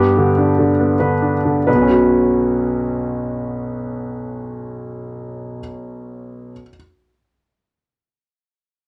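Classical piano in B minor, fragile and longing, moving in a rubato 3/4 around 92 BPM and tuned slightly low, with the opening slowing down over the first 1.7 seconds as a G chord gives way to Bsus2. A clear concert grand piano plays accompaniment from 0.0 to 6.7 seconds, ranging from B1 to B4, its intimate, boxy tone placed up front with deep bass and audible action noise. Light reverb sits on a dry, gritty cassette-tape recording, and the passage is cut from a longer piece.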